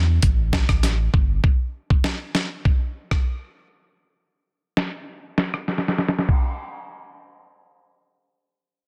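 Dancehall with a sultry, bouncy mood, this short cut from a longer piece opens on a deep, full sub bass with an octave layer, sustained and sine-like, that sounds only until 1.4 seconds. A gritty, compressed sampler-style drum kit with a thumpy kick, medium-tuned snare, rim click, hi-hat and crash sits up front from 0.2 seconds and closes with a fill at 5.7 seconds. The sound is dry, dense and heavily limited, with a low-pass filter dulling the top end.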